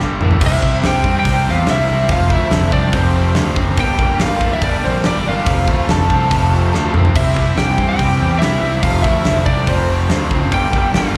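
Driving and swaggering, this classic rock excerpt at 142 BPM, heard as a live gig through a club PA, opens on a drum fill from a big, up-front kit with a fat snare and punchy kick, under a growly fuzz bass, a background slapback-echoed semi-hollow riff, a faint raw garage riff and a very quiet boxy acoustic archtop, before a twangy, slightly broken-up lead melody with its dark octave-fuzz second line enters at 0.5 seconds over a shouting tonewheel organ on slow rotary, with the chords moving through C, F and Gm.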